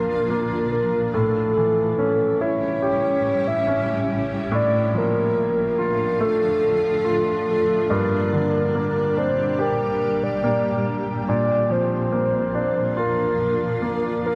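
A lush hall reverb with a long, moderate tail surrounds this short, hopeful and emotional pop fragment, cut from a longer piece. Up front, a soft, octave-layered synth lead carries the melody with a round, dark tone, its sub octave adding fullness and its chorus and vibrato giving the sustained notes a gentle shimmer. Beneath it, a clear concert grand piano plays the accompaniment with a polished, present sound, deep bass and short sustain. Further back, a granular cloud pad holds sustained chords that feel blurred and evolving, its detuned unison voices and slow attack creating a hazy bed with their own built-in reverb. All three parts play together throughout the 14.4 seconds, moving through Bb, A7, Dm/A and Gm before returning to Bb.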